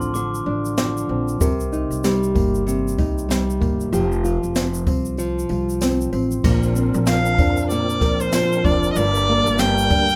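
Dark, fingerpicked nylon-string guitar, woody pizzicato upright bass and an airy brushed drum kit open this easy-going, heartfelt acoustic pop excerpt with a light swing, joined briefly by a bell-like glockenspiel and then a very quiet, jingly tambourine, before a fat tonewheel organ with a fast rotary speaker enters at 6.4 seconds and a smooth, focused bowed violin takes the melody from 7.1 seconds, all in a rough home-demo mix with light reverb.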